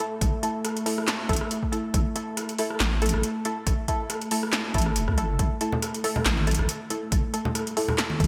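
Dark and brooding, this short cut from a longer deep dubstep piece moves in a half-time 4/4 feel with a gentle swing on the sixteenths. A deep, moody ambient pad holds sustained chords throughout, its detuned sawtooth and sine layers carrying chorus and their own built-in reverb, while a filtered dub chord stab adds muted, mellow plucks with subtle chorus and dub echo. The drums are overdriven and electronic: a deep-house kit with a punchy snare, metallic hats, handclaps and rim click sits up front under gated reverb, and an electronic kick joins at 0.2 s alongside a deep, soft wobble bass that is saturated, detuned and thick with chorus. Bright, thin-skinned congas with a low tuning and a small-room acoustic character enter at 5.7 s. The whole is set in a lush hall reverb with a bright 1980s-style digital sheen.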